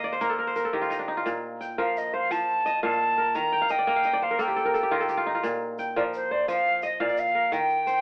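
Heard through a narrow, telephone-like filter with a moderate studio reverb, this eight-second clip from a longer piece carries a flowing, hypnotic West African string and xylophone character in a straight 12/8. A breathy silver concert flute sits up front and close-miked, playing the melody with a straight, tongued tone that still feels expressive and metallic. The kora, also up front, spins fingerpicked arpeggios that ring out crisp and warm across a broad span. It breaks into fills at the start and again from 3.5 seconds. In the background, a tube shaker adds a grainy, bright texture with a small-room sound.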